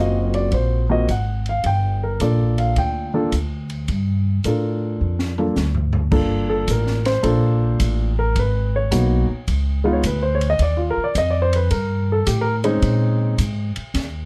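An intimate grand piano with audible key-action noise and a woody, pizzicato upright bass open this smoky, moody swinging jazz trio fragment, joined by a small-room acoustic drum kit with dark cymbals, a high-tuned snare and a boomy kick, whose fill at 5.0 seconds leads into the piano's solo from 6.1 seconds over a dark, lightly reverberant mix where piano and bass sit up front.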